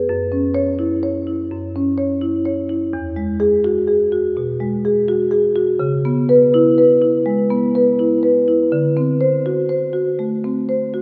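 Hypnotic and reflective, this contemporary classical excerpt for solo marimba drifts at a rubato 83 BPM in 4/4, its woody rosewood bars struck with medium mallets sounding vintage and band-limited up front in a wet church reverb with a 3.5-second decay, as the harmony moves from C#m/F# through Eadd9 and C#m7 to D7 across an E2 to C#5 range, tuned to A4 = 438 Hz.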